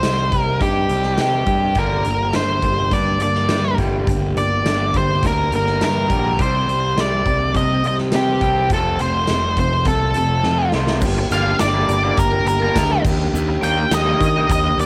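Indie rock in G minor at 104 BPM, cool and moody, with an up-front octave-fuzz lead guitar carrying a dark, distorted melody over a lo-fi, slightly broken-up riff from an electric guitar through a small old amp and a warm fuzz picked bass. A big rock drum kit with bright cymbals and a punchy kick drives the straight 4/4 feel, an overdriven electric guitar with subtle chorus and tape echo joins in the background at 1.8 seconds, and a drum fill at 10.4 seconds leads to a shift toward Gm7 and Ebmaj7 chords. From 11.0 seconds a grainy egg shaker sits quietly behind this dry home cassette recording, which is cut from a longer piece.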